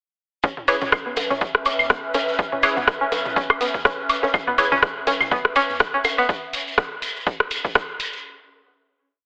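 A dry, overdriven electronic kick pounds four-on-the-floor at 123 BPM in 4/4, joined at 0.7 s by a punchy analog drum machine playing programmed hats and a rim-click backbeat, while grainy, distant maracas run hand-played sixteenths with a 56% swing until 8.2 s. Overdriven electronic toms, woodblock, claves and bongos scatter clicks and blips in cross rhythm, their tape echo adding a quirky, sparse edge to this short minimal techno piece in C# minor, which opens on C#m7. Up front, a twangy, string-like resonator pluck repeats a 7-step loop that drifts against the bar, a filter sweep running through it until 6.3 s, and a crisp, detuned wavetable stab drops sparse echoing chords through a phaser. Underneath, a rubbery, hollow square bass sits in the background with a syncopated riff, an airy, breathy pad drifts through slowly shifting chords with chorus, and a swarming, very quiet drone holds a single high note from 1.7 s. 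The sound is heavily compressed with a radio-and-telephone squeeze, set in a moderate plate reverb, with sidechain pumping on the pluck, bass and pad.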